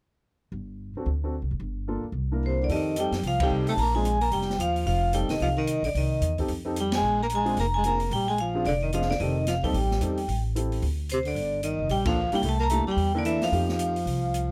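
A 60% eighth-note swing at 222 BPM in 4/4 drives this sophisticated, relaxed small-group jazz piece in F mixolydian, which opens with woody pizzicato upright bass up front and a natural-sounding grand piano comping before a ringing, metallic vibraphone with slow motor vibrato takes the melody at 2.5 seconds alongside a soft-attack, subtone tenor saxophone second line with light vibrato, while an open drum kit with dark cymbals, a medium-tuned snare and a boomy kick enters at 2.7 seconds, band accents land at 3.4, 6.9 and 12 seconds, and the close, dry recording keeps every part detailed.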